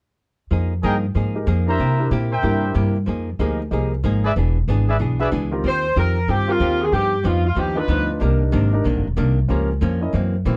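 Dark, clean hollow-body guitar and a woody pizzicato upright bass open this brassy, joyful big band swing excerpt at 187 BPM, joined by a smooth-topped trumpet section playing stabs from 0.8 s, an intimate concert grand piano with audible action noise accompanying from 1.4 s, and a soft-attack saxophone section carrying the melody with light vibrato from 5.7 s, captured in a dry, close 1970s-style studio sound with light reverb.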